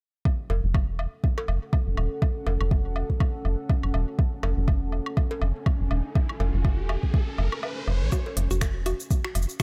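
A rubbery, hollow square bass sits up front in this hypnotic, clinical minimal techno passage, bouncing low with a fast, resonant filter pluck and tube saturation, pumping against the soft, tape-warm electronic kick. Layered woodblock and cowbell add an overdriven percussive edge on a swung sixteenth feel over a single minor chord. Shortly after the start, a deep, moody sawtooth pad rises in with a slow attack, detuned unison, chorus and its own reverb, breathing with sidechain pumping in the background. An electronic riser builds from 5.0 seconds, and the kick briefly drops out at 7.6 seconds. At 8.1 seconds the harmony falls away as a woody, round FM mallet pluck enters with chorus and tape echo, alongside a minimal click kit of finger snaps, clicky hi-hat and shaker, all set in a roomy digital ambience.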